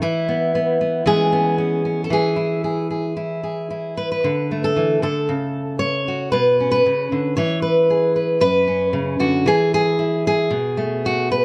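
A fingerpicked steel-string acoustic guitar plays alone throughout this brief folk clip, its dark, up-front tone moving freely in a rubato feel that gives the music a wistful, haunting mood. Open, suspended harmonies drift from E through C#m7/E, D5 and Bsus2 before settling on a third-less B7 near 10.5 seconds. Close, detailed miking and light reverb frame the guitar, though lossy compression artefacts can be heard.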